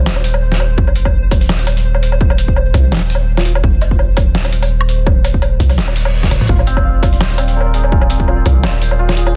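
The sound is dense and heavily limited, with little reverb, in this heavy, tense half-time drum and bass excerpt at 168 BPM in F dorian, tuned to A4 = 437 Hz. A deep, sine-toned 808-style bass sits up front from the start, its tube saturation adding body, while a pulsing, tempo-synced gated texture of detuned triangle voices hovers in the background with chorus and its own reverb. A gritty, pitched-down boom bap sampler kit supplies hi-hat, a medium-tuned snare, toms and woodblock with a tape-warm edge, joined by a heavy electronic kick that carries the air of a large room. A bell-like FM electric piano flickers briefly on a single F4, sparkling through chorus and dub echo. An electronic reverse cymbal leads into a drum fill at 6.3 seconds, and at 6.5 seconds a hammered, shimmering santur begins arpeggios colored by dub echo.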